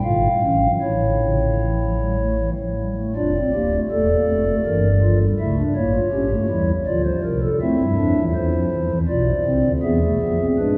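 A solo pipe organ on a stopped flute register, soft, hollow and mellow with a romantic voicing, sits up front in this elegant, lively excerpt from a baroque-style four-part fugue in D minor. It moves at 80 BPM in a straight 3/4, spanning from D1 up to E#5, and a new section begins at 3.2 s as the harmony settles from A onto D minor before closing on E. A cathedral reverb with a 6.2-second decay bathes the playing in the resonant space of a church or concert hall.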